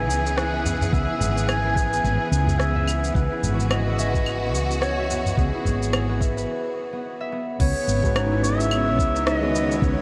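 A swung sixteenth-note groove at 108 BPM in 4/4 drives this mystical organic downtempo piece, with a soft, tape-tinged electronic kick arriving at 0.9 seconds beneath claves, rim clicks, shaker and crash from a produced electronic kit, while a small, dry udu sits close in the background. A dark, round fretless electric bass with tube saturation and sidechain pumping sits up front, under a clear, focused string section holding bowed vibrato chords that carry sidechain pumping. A fingerpicked concert harp rings out arpeggios through diffuse ambient delay, and a mellow, distant clarinet carries the melody with delay in a classical solo style. After a break at 6.5 seconds, the harmony shifts from E to C#m9, and a barky, gritty overdriven tine electric piano enters at 8.0 seconds with fast tremolo, combo-amp grit, sidechain pumping and ambient delay. A huge, dreamy reverb soaks the whole mix, giving this short cut from a longer piece a hazy, floating glow.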